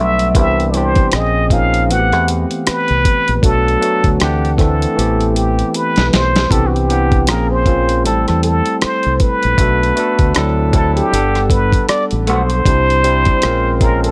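R&B with a neo-soul lean, this soulful, sultry excerpt moves at a slow 78 BPM in 4/4 with a swung sixteenth-note feel, set in A dorian. A plunger-muted trumpet carries the melody up front, its clear yet breathy tone shaped by a wah-wah quality, light vibrato and scooped notes in a jazz-style solo voice. Beneath it, a barky tine electric piano, bright and lightly overdriven through a combo amp, lays down chords such as Cmaj9, Bbm9, Am9 and D9, while a deep fingered electric bass sits round, dark and punchy in the low register. A gritty, compressed sampler-style drum kit with a thumpy kick, medium-tuned snare, rim click and hi-hat comes in at 0.2 seconds and plays a fill from 5.0 to 6.5 seconds before the phrase repeats. A lo-fi, slightly broken-up electric guitar through a small old amp, touched with spring reverb, appears only briefly at 12.3 seconds, and the close, dry mix keeps every part near and intimate.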